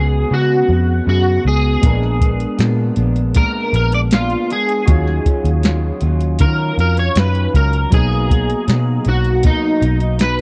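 Indie bedroom pop with a wistful, lonely mood, this short excerpt sets a twangy lead guitar at the edge of break-up, carrying the melody up front under ensemble chorus, over a slightly broken-up second guitar through a small old amp with subtle chorus and vibrato, sawtooth analog keys with detuned filter sweeps sitting in the background, and a dark, foam-muted picked bass, while a soft vintage rhythm box with a deep kick, tonal snare and metallic hats joins at 1.8 seconds in a dry, close 1970s-style studio sound.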